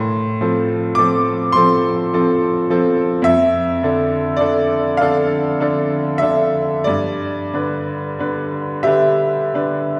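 Tender and nostalgic, this brief passage is a romantic classical nocturne for solo piano, cut from a longer piece. It moves very slowly in 6/8, around 30-36 BPM counted in dotted quarters, with a flexible, rubato feel. A bright grand piano carries everything from start to finish, spanning F2 to D6 with a brilliant, smooth, vintage tone and long sustain, sitting up front in the mix. The harmony drifts from F/A to Dm/F at 3.3 seconds and arrives on G at 6.9 seconds. A wet concert hall reverb, with a decay of about 2.2 seconds, places the listener further back in the room, lending the sound an airy sense of space.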